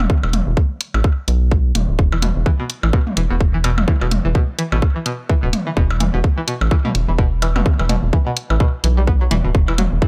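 Clinical and hypnotic, this minimal techno cut from a longer piece runs at 127 BPM in 4/4 with a 58% swing on the sixteenths. It rests on a tight, up-front electronic kick, bright layered hi-hats and overdriven tom and percussion blips run through tape echo, while a rubbery, hollow square-wave bass sits dark and bouncy underneath with sidechain pumping. At 2.1 seconds a twangy, string-like resonator pluck enters, warbling through chorus, phaser, tape echo and its own sidechain pumping, all over a single E5 chord in a dry, gritty hardware sound.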